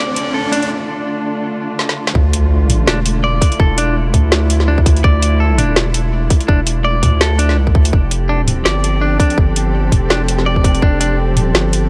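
A dry sound frames this heavy, spacious half-time drum and bass excerpt in D minor at 166 BPM, where a dark, woody cello section sustains pumping chords throughout, a bright, twangy clean electric guitar picks delayed arpeggios, an electronic riser and sub drop open the build-up, a break and drum fill lead to the drop at 2.1 seconds, a saturated, thick sine sub bass and a tight layered kick enter up front, and the small-room drum kit adds a woody snare, metallic hats and toms as the chords move from Dm to Dmadd9 and then to F at 7.9 seconds.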